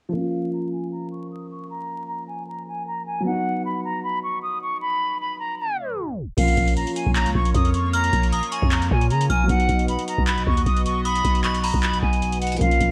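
This trap-style hip hop excerpt opens with an airy, up-front concert flute carrying the melody with vibrato over a dark, boxy grand piano, both muffled by a low-pass filter as a filter sweep runs through the opening and a tape stop pulls the sound down just before 6.4 seconds. At that point the half-time beat arrives: a booming analog drum machine with a deep kick, metallic hi-hats, handclaps and crash cymbal, roughened by 12-bit sampler grit and gated reverb. A growling, buzzy 808-style bass enters alongside it, joined by an evolving, resonant pad that holds sustained chords with a slow filter swell and chorus. From 7.9 seconds a ringing, inharmonic FM bell adds a second line up high, treated with tremolo, chorus and delay. The harmony rocks between Bb minor and B, giving the piece a melancholic, menacing mood, set in light reverb with vinyl crackle and a glossy 1980s-style digital sheen.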